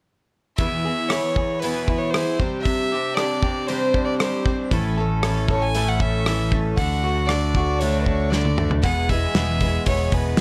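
A straight 4/4 pulse at 116 BPM drives this short folk rock and heartland rock excerpt in E mixolydian, with an open-road feel as the chords move from E through Csus2, A and D before landing back on E at 8.8 seconds. A clear, earthy fiddle carries the melody up front over a shimmering, octave-doubled twelve-string acoustic guitar and a slightly broken-up electric guitar riff through a small old amp. A damped 70s drum kit with a tight kick and medium-tuned snare sits dry and forward, rolling into a fill at 8.3 seconds, while a dark, round picked electric bass joins at 4.7 seconds, all set in a small room with light reverb.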